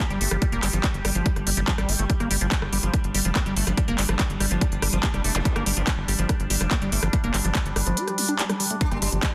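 Psychedelic trance with an intense, driving feel, cut from a longer piece, where an overdriven, heavy electronic kick and a techno kit of handclaps, smooth hats and rim clicks sit up front alongside a tight, punchy sequencer bass with a sawtooth bite and a plucky filter. A squelchy, resonant acid bass riff with phaser, tape colour, delay and sidechain pumping threads through the groove, while a detuned, chorused drone of moving overtones holds sustained chords in the background. The kick drops out at 8.0 seconds, a background zap flickers briefly at 5.3 seconds, and a buzzing, shimmering sitar enters at 8.8 seconds, all within a dense, heavily limited master with light digital ambience and a faint mains hum.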